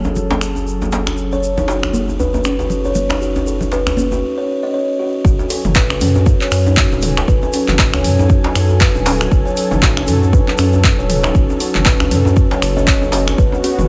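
A lightly reverberant mix carries this hypnotic, driving afro house excerpt at 118 BPM in F# dorian, where a smooth detuned analog pad with chorus and a round, deep analog bass both pump under the sidechain from the start, joined by a background djembe, a grainy egg shaker, dry hard-hand congas that stop at 4.2 seconds, a deep house kit with dark hats, snaps, claps and toms, and an up-front buzzing, woody kalimba playing delayed arpeggios from 1.3 seconds, until a tape-flavoured electronic kick lands with the drop at 5.2 seconds as the harmony moves from F#madd9 to F#m69.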